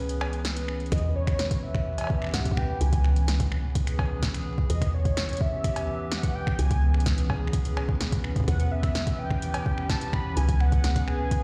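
A hollow, flute-like pad and a round, woody FM bass with tube saturation open this intricate, cerebral IDM excerpt at 127 BPM, with an electro drum machine of punchy snare, metallic hats, cowbell and finger snaps entering a moment later before a soft overdriven kick and a velvety, detuned sawtooth lead with chorus, vibrato and dub echo arrive at 0.9 seconds, all cycling between C#m7 and Em6 in a big, bare-room reverb.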